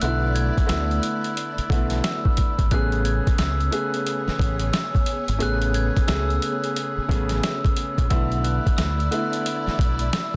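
A gritty, pitched-down boom-bap drum kit with a thumpy kick and medium-tuned snare sits up front alongside a round, punchy fingered electric bass, driving this soulful, warm hip-hop fragment at 89 BPM with a swung 16th feel in A major. A woody upright piano colored by cassette tape carries the accompaniment while a bell-like glockenspiel, played with soft plastic mallets and touched with delay, rings out the melody up high, backed by a lush, bowed string section holding sustained chords with vibrato. The harmony moves from E7sus4 to Amaj9 at 2.7 seconds and back to E7sus4 at 8.1 seconds, all set in a small room and a dense, heavily limited modern master.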